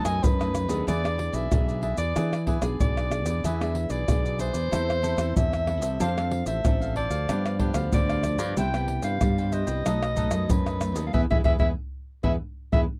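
Nostalgic and bittersweet, this samba-choro fragment sets a breathy, jazz-style soprano saxophone solo up front over crisp picked cavaquinho, fingerpicked classical nylon-string guitar with audible finger squeak, a bright, punchy fingered electric bass, and close, hard-handed maracas, pandeiro, tamborim and tight surdo, all captured in a dry 1970s-style studio sound before a band accent at 11.1 seconds.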